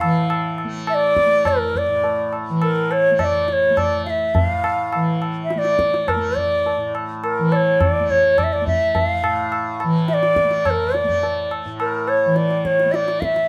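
An airy, reedy bansuri sings up front with vibrato and tongued notes over a softly plucked, buzzing tanpura drone and close, dry, high-tuned tabla in this radiant, meditative fragment of Hindustani classical music, played live together in one room with a moderate studio reverb.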